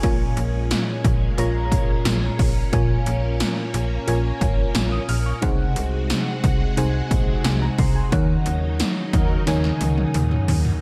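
Dramatic and moody, this short excerpt of 1980s-style pop moves at 89 BPM in Bb minor, with a round, dark FM electric piano carrying the accompaniment up front with chorus, a shimmering, warbling string machine holding sustained violin chords under ensemble chorus, and a snappy slap-like FM bass with a metallic attack underpinning chords from Bbm7 through Ab7/C to Ebm7. Electronic pad drums sit up front with a punchy kick, metallic hats, overdrive and gated reverb on the snare and toms. At 8.1 seconds the band hits an accent while very quiet, brassy synth stabs with vibrato slip in, and a drum fill closes from 9.5 seconds, all in light reverb.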